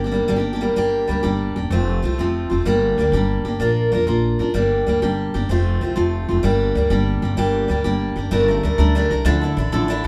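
A bright, picked steel-string acoustic guitar drives this dark, lively Celtic jig in G dorian at 127 BPM in 6/8, joined throughout by a woody pizzicato upright bass, the pair set in a moderate studio reverb heard from further back in the room as the chords move from Gm, F and Bb to a closing shift onto Gmadd9 at 8.3 seconds and Dmadd9 at 9.3 seconds in this short cut from a longer piece.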